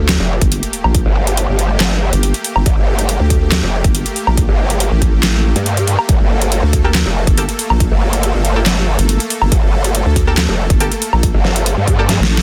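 A half-time 4/4 pulse at 140 BPM drives this aggressive, heavy wobble dubstep excerpt in G minor, where a punchy overdriven electronic kick and an up-front dubstep kit with deep snare, metallic hats, handclaps and woodblock sit alongside a nasal, dark vowel-sweep wobble bass and a growling, detuned growl bass, both saturated with chorus and overdrive. A lush supersaw pad sustains a Gmadd9 chord with sidechain pumping, a very quiet sub drop marks the opening impact, a bold orchestra-hit-like synth stab with dub echo joins in the background at 6.8 seconds, and a drum fill closes at 12.1 seconds in a dense, heavily limited, dry mix.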